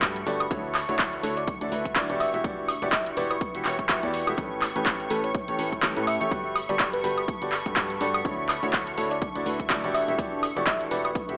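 This energetic, soulful piano house piece opens on a clear, woody upright piano riff set up front, driven by a punchy electronic kick and an overdriven house kit of handclaps, hi-hat, shaker and woodblock, both re-recorded in a large room. At 124 BPM in 4/4 with a 57% swing on the 16ths, the groove sits in E dorian, and the harmony moves through Gmaj9, Em9 and A9 before returning to Gmaj9 and Em9. Beneath the piano, a round, dark FM bass gives a fast-attack foundation, while a silky, bright analog string pad holds sustained chords through ensemble chorus and phaser. Deeper in the background, a moody ambient pad adds a shadowy sub-octave texture with chorus and its own reverb, and the strings, piano, bass and ambient pad share a sidechain pumping. From 1.2 seconds, a sparkling, bell-like FM electric piano plays a mellow melody in the background, colored by chorus, phaser and dub echo, an echo the upright piano also carries. 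The mix has light reverb and a digital ambience with a small-speaker character, and this 11.4-second passage is cut from a longer piece.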